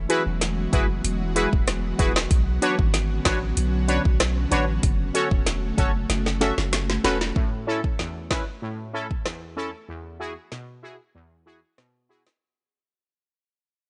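Sunny and bouncy, this dancehall excerpt at 95 BPM in A major rides an up-front electronic afro-pop drum kit with a deep kick, woody snare, rim click and metallic hats. A punchy sine sub bass with a pitch-drop attack and an airy, warbling, detuned pad with ensemble chorus and sidechain pumping both drop out at 7.3 seconds, during a drum fill that starts at 6.1 seconds. From there, bright chorused sawtooth brass stabs with a filter sweep carry on with the drums through the fade-out from 7.4 to 12.4 seconds.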